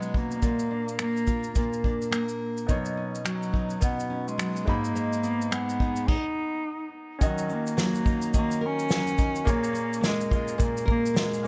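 A dry recording with little reverb carries this tender, reflective acoustic pop excerpt, swung on sixteenths and played at 106 BPM. An up-front bass clarinet leads with a jazz-style solo full of vibrato and scooped notes, its smooth top touched by delay, over fingerpicked, full-bodied nylon-string guitar and an unplugged drum kit played with bundle sticks, featuring a punchy kick, fat snare, dark cymbals, finger snaps and shaker. A clear, natural grand piano joins at 2.7 seconds, and after a brief stop from 6.1 to 7.2 seconds a very quiet, grainy egg shaker enters as the music moves into a new section.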